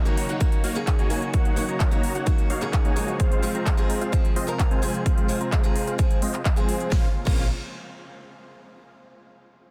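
Festival progressive house with a powerful, euphoric mood, built on huge, detuned supersaw chords carrying the riff under a filter sweep and dub echo, alongside a boxy picked ladder-braced acoustic guitar with its own echo and a warbling vintage pad in the background, all pumping to the sidechain over the chords Ebm7 and Fm. A big-room kit of punchy snare, crisp hats, handclaps and crash enters at 0.1 s, joined by an overdriven, up-front electronic kick at 0.4 s, and a thick, saturated detuned saw bass slips in very quietly on Bb1 at 6.9 s as the harmony moves to Bbmadd9. The dense, heavily limited master sits in digital ambience, and the recording is cut from a longer piece.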